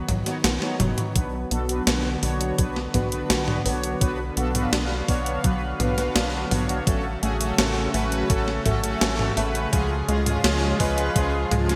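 Driving and cinematic, this synthwave piece sets a tight, punchy sequencer bass and a thumpy electronic kick under an up-front gated 80s digital drum machine, whose hi-hat, snare and toms ring with gated reverb and break into a drum fill at 0.6 s. A thick, detuned unison pad holds sustained chords in the background with chorus and sidechain pumping, while bold, fat analog synth brass stabs enter at 0.3 s. A round, nasal analog pluck plays arpeggios through chorus, phaser and digital delay, with a filter sweep from 1.2 s, all within a bright 1980s-style digital production bathed in a wet hall reverb.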